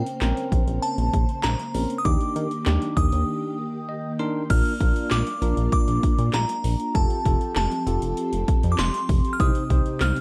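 Punchy kick, gated snare, metallic hi-hats and handclaps from up-front 80s electronic drums drive a straight 4/4 groove in this upbeat yet wistful synth-pop fragment, where a glossy chorused synth bass anchors the low end, a vintage organ-like string ensemble holds mellow sustained chords, a clean bell-like tine electric piano comps and then fills the break from 3.6 to 4.5 seconds, and a crystalline FM synth bell carries the high melody through chorus and tape echo, all set in a dark, lightly reverberant digital ambience.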